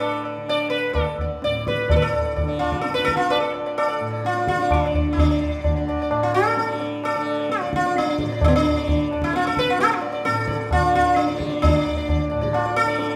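A plectrum-plucked sitar sits up front with a round, buzzing tone and shimmering sympathetic strings, carrying an introspective, longing melody from B3 to D5 across this Hindustani classical excerpt at 130 BPM in 7/4. Beneath it a bright, softly plucked tanpura holds a quiet drone from D2 to D3, while a low-tuned, ringing tabla sounds distant, as if set back in a large room. The whole 13.2-second passage speeds up as it goes, heard in a reverberant recital hall, with the melody moving into a new section at 1.9 seconds.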